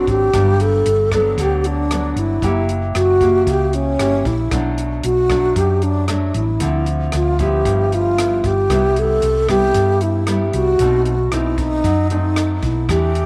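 Wistful and melancholic, this bossa nova fragment is led by a close-miked alto flute with a wooden head, its mellow, breathy tone, soft attack and expressive vibrato carried up front with a slapback echo. A dark, thumb-plucked nylon-string guitar with fresh strings and a round, amped hollow-body electric bass move through chords such as Gmaj7, F#7b9 and Dm9, while a compact cocktail kit adds dry hi-hat, rim click and a punchy kick, all within a moderate spring reverb. At 12.9 seconds a concert flute slips in with a tongued G4, its lifted highs and warm vibrato briefly joining the lead just before the cut.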